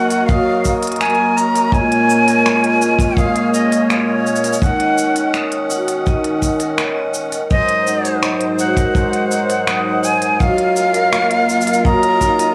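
A soft haze of vinyl crackle and moderate studio reverb wraps this intimate, delicate folktronica excerpt in Eb dorian at 83 BPM, where a breathy, chiff-edged jazz flute carries the melody up front over a Gb, Bbm7, Ebm7, Ab7 and Gbmaj7 progression. A metallic vibraphone with fast motor vibrato adds a tape-echoed second line, while a cimbalom's hammered, shimmering arpeggios pick up a gritty 12-bit sampler edge and a musette accordion holds reedy, wet-tuned chords beneath. An overdriven electronic kit of finger snaps, crisp hi-hat and shaker that sounds re-recorded in a large room enters at 0.1 seconds, joined at 0.3 seconds by a dry, tight acoustic kick sitting up front.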